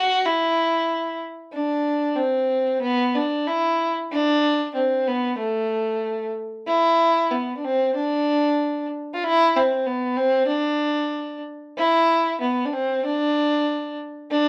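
Bouncy and jolly, this straight alpine folk fragment in 2/4 is carried by a lone bowed fiddle with a dark, woody tone and light vibrato, sitting up front yet slightly distant in a moderate studio reverb as its tune moves into a new section at 6.7 seconds before breaking off at 14.5 seconds.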